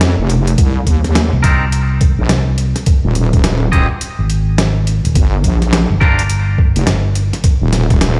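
Funky and swaggering, this short glitch hop cut swings on a gritty, pitched-down boom bap kit of hi-hat and medium-tuned snare, with a thumpy electronic kick entering at 0.6 seconds, a heavy, resonant wobble bass with chorus and tube saturation up front alongside a round, amped fingered electric bass, and bright, twangy guitar stabs with sidechain pumping and delay over Cm7, Ab5 and Gm7, all heard dry yet played back through a big system in a bare stone room.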